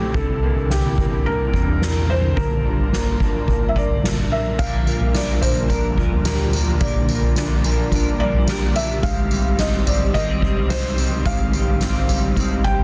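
Dream pop with a floating, ethereal mood, cut from a longer piece: a mellow, felt-muted upright piano carries the melody with digital delay and audible action noise over a hollow, flute-like pad that warbles under ensemble chorus. An electric guitar at the edge of break-up plays fingered arpeggios through chorus and delay, while a deep sine sub bass with octave sits in the background and a soft-mallet drum kit with boomy kick, dark cymbals and tambourine stands up front. At 4.6 seconds a clean, scooped electric guitar enters with harmonic tremolo and lush chorus as the chords move from C9 and Gm7 to Bb6 and Abmaj7, all under light reverb and a dense, heavily limited master.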